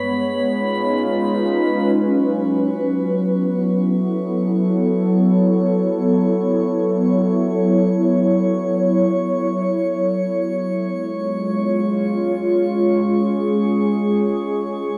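A warbly, detuned tape-like pad holds mellow sustained chords up front from the very start of this serene, melancholic ambient excerpt in free time and F# minor, moving from C#7 to F#m7 at 2.0 seconds and to C# at 10.7 seconds, while a faint, glassy texture of drifting sine overtones fades in high above it from 2.0 seconds, both parts carrying chorus and cassette tape coloring within a lush hall reverb that gives this lo-fi home recording a nostalgic haze.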